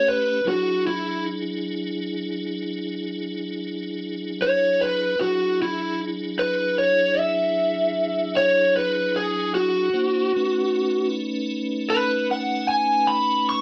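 An up-front, overdriven lead guitar from a small cranked amp carries a laid-back, swaggering blues solo in 12/8 throughout this cut from a longer piece, while a piping, scooped tonewheel organ, with key click, chorus vibrato and a slow rotary speaker, holds sustained chords beneath it, moving from E9 to B9 at 9.9 seconds, all set in a small room with a dark, warm production.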